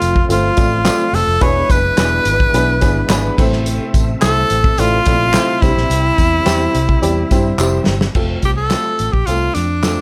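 The recording has light reverb and a small-room ambience, giving this uplifting, joyful slice of uptempo 1960s-style soul an intimate, lively feel at 107 BPM in F major. A clear, up-front tenor saxophone carries the melody with vibrato, close-miked and in a pop style, while a worn, woody and slightly detuned upright piano supplies accompaniment with long sustain. Beneath them, a dark, round, foam-muted fingered electric bass plays through an amp, and a soul drum kit with a punchy kick, medium-tuned snare, rolled-off top, hi-hat and crash drives the groove. Tambourine, maracas and group handclaps sit in the background. A gritty, overdriven tonewheel organ adds very quiet sustained chords through a fast rotary speaker with chorus and harmonic percussion, dropping out at 8.1 seconds. A drum fill from 7.6 seconds leads into the next section, where the harmony returns to F after moving through E7, Am and C.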